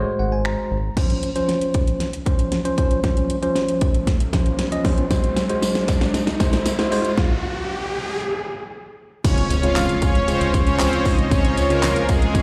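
A straight 4/4 dance-pop groove with a summery, carefree mood, built on a punchy, layered electronic drum kit of kick, fat snare, metallic hats, handclaps, finger snaps and crash, with a bell-like tine electric piano chiming up front and a round, deep analog bass that briefly sounds at the start and returns at 9.5 seconds, both pumping against the sidechain. An electronic riser builds through the middle, a soft jingly tambourine sits in the background, and a stop clears the way for the drop at 9.2 seconds, where an impact with slapback echo hits and a lush, detuned supersaw pad carries the melody with slapback and tape echo. A cloudy, evolving granular pad adds very quiet chords from 10.7 seconds, and the whole excerpt sounds like a live gig heard through the venue's PA in a reverberant recital hall.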